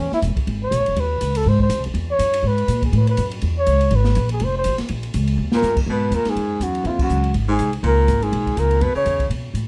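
A mellow flugelhorn with light vibrato and a soft attack carries the melody up front in this cool, late-night small-group swing and bop excerpt in G# minor at 244 BPM, over a woody, thumpy pizzicato upright bass and an open drum kit with dark cymbals and a boomy kick in a small room. After a drum fill at 5.4 seconds, a bright, punchy baritone saxophone enters as a second line at 5.5 seconds, with a band accent at 7.0 seconds, all set in light reverb and a warm production.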